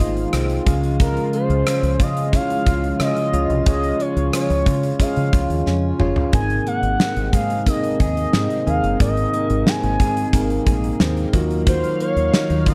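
A straight 4/4 groove at 90 BPM drives this glossy, nostalgic 1980s-style pop passage in Db major, carried by a gated drum kit with a fat snare and tight kick up front, a short fill at 5.7 seconds, and a deep, round, punchy fingered electric bass. A mellow tine electric piano and a lush, detuned sawtooth pad with chorus hold the chords moving from Fm7 to Db, Abadd9 and Ebmadd9, while a bright, compressed clean guitar riff with subtle chorus and slapback echo sits in the background. On top, a smooth, vintage portamento synth lead sings the melody with vibrato, chorus and slapback echo, all within a small room ambience.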